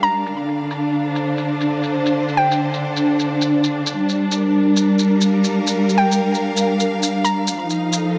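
Nocturnal and wistful, this short future garage passage in G minor moves at 133 BPM with a swung 16th feel, as lush, close bowed strings sustain Dm7, Gm7 and F7 chords beneath a hollow, detuned square-wave pluck melody with chorus and tape echo, heard from 0.0 to 2.6 seconds and again at 6.0, while a muffled, pitched-down shaker ticks throughout in a dark mix with light reverb.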